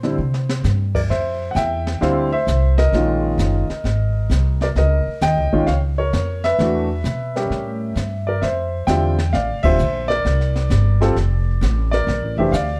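A relaxed, swinging 4/4 at 131 BPM carries this short jazz piano trio excerpt in F major, where an intimate, up-front concert grand with audible action noise takes the melody over a woody, growly pizzicato upright bass while a dark, smooth brush kit with a high-tuned snare and boomy kick adds a fill at 0.2 seconds and joins a band accent at 9.6 seconds, all under light reverb in a dark, warm production moving through chords like Ebm9, A7b9 and Bbmaj7#11.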